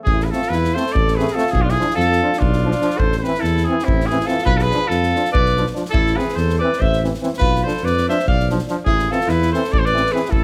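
Driven by a straight, lopsided 7/8 pulse, this short cut from a longer Balkan brass band piece feels virtuosic and bittersweet as it rocks between Am and Bdim chords. Up front, a clear cornet carries the melody in a pop style, its light vibrato and scooped notes ringing out in a roomy, somewhat distant space, while a warm alto saxophone adds a second line, also tinged with light vibrato. Underneath, a mellow tuba supplies the bass, and a street-band drum kit of kick and snare keeps the pulse with a boomy kick and a medium-tuned snare in an airy, polished big-room sound. From 0.3 s, a brilliant trombone and a French horn add accompaniment further back in the arrangement, the trombone sounding distant and the horn more present. A moderate recital hall reverb lends the whole band a sense of space until the cut ends at 10.4 s.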